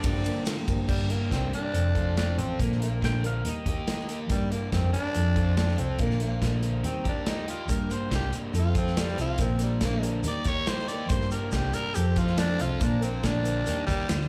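A straight 4/4 pulse at 141 BPM drives this reflective, dusty folk and heartland rock cut in G minor, taken from a longer live club performance. The up-front country drum kit, with its punchy kick and dark cymbals, anchors a round, hollow-body picked bass, a picked acoustic guitar and a bright, overdriven double-tracked guitar riff in the background, while a grainy tube shaker rejoins at 7.7 seconds. A raspy, growling tenor saxophone with light vibrato solos from 0.9 seconds over a cycling Gm, F, Bb, Eb progression, with brief touches of twangy, fingerpicked pedal steel early on, and slapback echo and club reverb lending the sound a small-room, through-the-PA feel.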